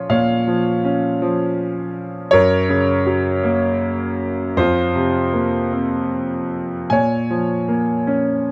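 Reflective and dark, this brief classical fragment, cut from a longer piece, features a lyrical solo grand piano in 6/8 metre with uneven beats and free rubato. The piano sits up front with a clear, smooth, vintage tone and long sustain, spanning F2 to Ab5 across its 8.5 seconds. Its harmony moves from Bb minor to Gb at 2.3 seconds, then to an Fsus4 at 4.6 seconds before settling back on Bb minor at 6.9 seconds. Close, detailed microphones capture the instrument intimately, while light reverb lends a gentle sense of space around it.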